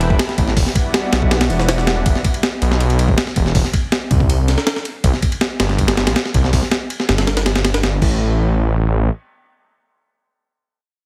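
Atmospheric and raw, this drum and bass and jungle cut at 161 BPM opens with a lush, chorused unison pad holding bright detuned chords over A7sus2 and Em9 until 2.0 seconds, while a gritty, sampler-style breakbeat kit with a thumpy kick, high-tuned snare, hi-hat, ride and crash sits up front in studio reverb until 8.1 seconds beside a thick, beating, menacing detuned saw bass that sustains through a C5 passage and carries on alone until 9.1 seconds, all within a dry, heavily compressed radio sound.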